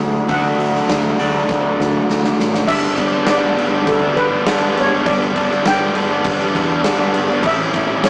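Wistful and hazy, this short rock cut leans into shoegaze and dream pop, moving at 101 BPM in a straight 4/4 feel in G lydian. A biting, double-tracked overdriven guitar riff sits up front from the start, alongside a growling picked electric bass with its own overdrive and a mellow, shimmering steel pan melody played with soft rubber sticks. A huge arena drum kit comes in at 0.3 seconds with a punchy kick, medium-tuned snare, bright cymbals and a pumping hall sound, then plays a fill from 1.5 to 2.7 seconds. The harmony starts on D, moves to G as the second section begins at 2.7 seconds, and turns to A7 near the end. A wet stone-room reverb surrounds the whole, and the rough rehearsal-room recording adds tube saturation and a small-speaker character that heightens the dreamy haze.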